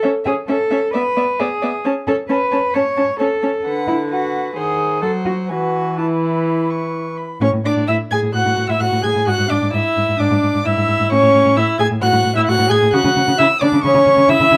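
A dark, lightly reverberant recording catches a spirited classical-period string quartet in A major at a quick 131 BPM, its pulse flexible and rubato, in a passage cut from a longer piece. Two gut-strung violins in period style carry the tune and a second line, the first with a light vibrato and the second nasal and distant, while a reedy viola fills in the accompaniment and a cello with light vibrato anchors the bass from G#2 up to C#5. The harmony moves from A/C# through Bm/D and D#m6 to E, then shifts at 7.4 seconds into a new section opening on a Dadd9(#11)/A and closing on C#madd11.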